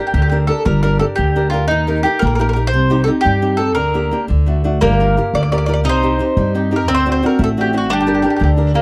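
Passionate and romantic, this Italian folk serenade in 6/8 sets a mellow, round picked mandolin melody up front over bright fingerpicked flamenco guitar with audible finger squeak and a thumpy pizzicato upright bass, while a woody second mandolin joins at 4.8 seconds with a slapback echo, all captured in a dry, close 1970s-style studio sound that is cut from a longer piece.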